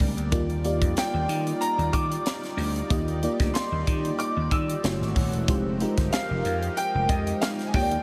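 Polished 1980s jazz-funk pop at 93 BPM in Eb major, glossy and urban, where a punchy, growly slap bass and a crisp fusion kit with a high-tuned snare drive beneath a chorused FM electric piano and a thick, detuned sawtooth pad moving from Ebmaj9 through Gbm9 to Fm9, while a clear, boxy grand piano carries the melody from 1.0 seconds with chorus and delay, all bathed in a huge, dreamy ambient reverb in this short cut from a longer piece.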